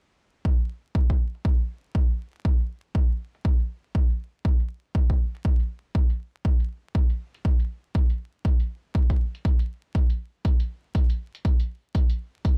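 A punchy analog kick drum sits up front in this smooth, deep house excerpt, entering at 0.5 seconds and carrying the groove at 120 BPM in 4/4 with a 60% swing on the sixteenths. Behind it, an electronic hi-hat set far back in the mix arrives at 0.4 seconds, its tone softened by a low-pass filter. Both drums were re-recorded in a small room, and the room sound on the hat is also low-pass filtered. A filter sweep runs across the drums for the whole single section, from 0.5 to 12.6 seconds. Little reverb is heard, and a layer of vinyl crackle adds a dusty surface to this brief, stripped-down groove cut from a longer piece.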